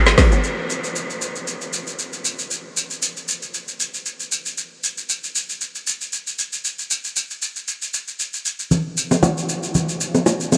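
Soulful and late-night, this amapiano excerpt moves at 116 BPM in 4/4 with a gentle 16th-note swing, its dreamy mix soaked in a huge, lingering reverb. An electronic, overdriven afro-pop drum kit sits up front for the whole clip, pairing a deep kick and woody snare with metallic hi-hats, rim clicks and shaker. Bright acoustic bongos and congas, played with soft hands, flicker in briefly at the start and return at 8.7 seconds to carry through to the end.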